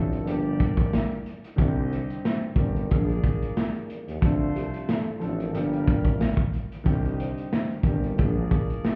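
A ringing vibraphone melody and a dark, mellow baby grand piano with audible action noise and a cassette-tape tint open this tough, reflective boom-bap hip-hop excerpt in C minor at 91 BPM, joined at once by a clear, softly attacked tuba bass line with light vibrato up front. From 0.1 seconds a crunchy, saturated breakbeat kit with a tight kick and medium-tuned snare drives a swung groove, and from 0.3 seconds a distant, roomy horn section adds tight jazz stabs through analog delay over chords moving from Gm7 through Cmadd9, Bb7 and Dm7. The whole mix sounds muffled as if heard through a wall, with club reverb and vinyl crackle.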